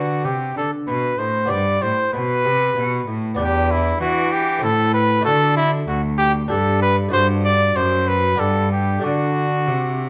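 This classical, baroque-style sonata movement with continuo moves in a dance-like, flowing 3/4 at 96 BPM in G major, heard as a 10.1-second passage cut from a longer piece. A solo trumpet carries the melody up front in a warm, classical style, sitting between E4 and D5. Beneath it, a single bowed cello supplies the bass with a rich, reedy gut-string tone in period style, also placed up front. A fingerpicked acoustic lute fills out the accompaniment with a delicate sound from its doubled gut strings, some of them octave-doubled, spanning D2 to A4. The harmony starts on G, moves through Em7, Am and D, then returns to G with a D/G before closing on D, all within a moderate large-studio reverb lasting about 1.4 seconds.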